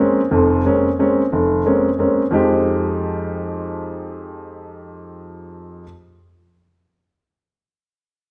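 An intimate, up-front grand piano with audible action noise plays alone in this brief, cool and searching jazz excerpt in a swung 3/4, moving from Bbm9 to Fm9 at 2.3 seconds across a span of F1 to G4 inside the wet reverb of a recital hall.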